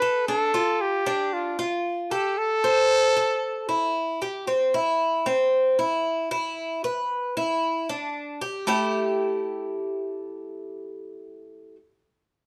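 Danceable and nostalgic, this Latin excerpt in a straight 4/4 opens with a warm, pop-style trumpet solo carrying the melody up front, its smooth top touched with light vibrato, before it drops out at 4.0 seconds. A bright, metallic Cuban tres plays picked arpeggios on its doubled, partly octave-doubled strings throughout until 11.8 seconds, moving through Dm, Am, C, E5 and A5. Close, detailed microphones capture both parts in a moderately large studio room with a gentle reverb.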